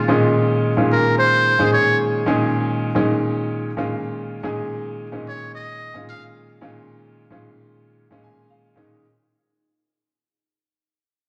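Jazz in Bb minor at 110 BPM in a straight 4/4, with a nocturnal yet driving mood, captured live at a gig through the club's sound system with a moderate plate reverb adding to the room's ambience. A trumpet with a metal mute carries the melody as a solo, buzzy and thin with vibrato and a breathy edge, sitting present and up front in short phrases from 0.0 to 2.0 seconds and again from 5.3 to 6.2 seconds. A bright baby grand piano accompanies throughout, its brilliant, natural tone also placed up front, and it adds a fill from 8.0 to 9.0 seconds. Both instruments carry a slapback echo, and the harmony rests on a Bbm11 chord. The short passage is cut from a longer performance and fades out across its length.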